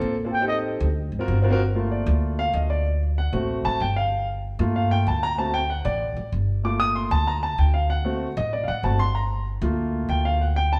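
Afro-Cuban jazz at a driving, fiery 191 BPM in 4/4, this short cut begins with piano and upright bass, and a breathy, whispered flugelhorn phrase enters between 0.3 and 0.6 seconds, mellow with vibrato over Am7b5 and D7alt. From 1.6 seconds the concert grand piano takes a solo with smooth, vintage character, deep bass and audible action noise, over a woody, bright pizzicato upright bass as the harmony alternates between Gm7 and D7. Everything is heard as a band playing live in one room with a wet large studio reverb, and the piano, bass and flugelhorn all sit up front.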